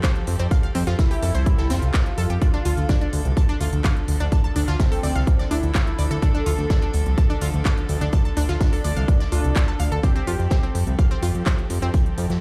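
Melodic techno at 126 BPM in D minor, this dramatic, cinematic passage is cut from a longer piece and moves from Fadd9 to Dm and back to Fadd9. A punchy electronic kick sits up front, layered with a house kit of handclaps and crisp hats, while a distant, roomy acoustic kit adds filtered hi-hat and a medium-tuned snare played with bundle sticks in the background. A fat sawtooth bass with a filter sweep enters at 0.3 seconds and pumps against the kick, and a bright, round analog pluck runs arpeggios through chorus and tape echo. Behind them, an earthy chamber string section holds bowed chords with light vibrato, also pumping, far back in the mix. From 1.0 to 10.7 seconds a bold, detuned unison lead with wave-folding and vibrato carries the melody, thickened by lush chorus and delay. The whole plays dry yet sounds as if heard on a big sound system in a bare stone room.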